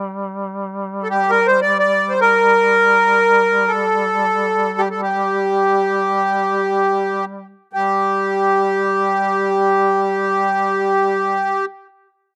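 A distant duduk opens with a warm, wavering drone on G3, its vibrato and scooped notes giving this mournful Caucasian lament its folk character in free time and G minor, tuned to A4 = 438 Hz. At 1.0 s a reedy, close-miked accordion enters up front with a full, dry melody between G4 and D5, its slow beating adding to the longing mood as the music slows through the first 7.7 s before moving into a new passage. Recorded outdoors with light reverb, the playing breaks off at 11.7 s in this fragment cut from a longer piece.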